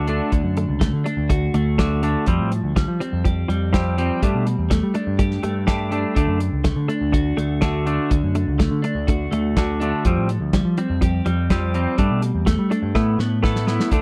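A straight 4/4 pulse drives this wistful yet upbeat indie rock excerpt, carried by a cloth-damped, thuddy drum kit with a tight kick and a rolled-off top, which adds a fill from 13.0 to 13.9 seconds. Two electric guitars play riffs throughout: one bright and clean, bathed in lush chorus and tape echo, the other twangy and compressed, while a punchy, amped picked bass sits up front beneath them. The chords move from D through Fadd9 and Gsus2 before closing on Asus2, all captured in a dry, close, 1970s-style studio sound.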